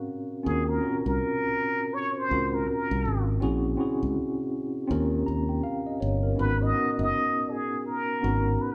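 R&B excerpt with a smooth, sultry mood and a swung sixteenth-note feel, built on chords moving from Ebm7 through Bbm7b5 and Eb7 to Abm7. A breathy, plunger-muted trumpet carries the melody with a soft, whispered wah-wah tone that sounds distant and roomy, while a worn, slightly out-of-tune tine electric piano accompanies with light overdrive and fast tremolo through a combo amp. A bright, punchy fingered electric bass enters at 0.5 seconds, and the band sounds like it is playing live in one room, bathed in a wet, large studio reverb.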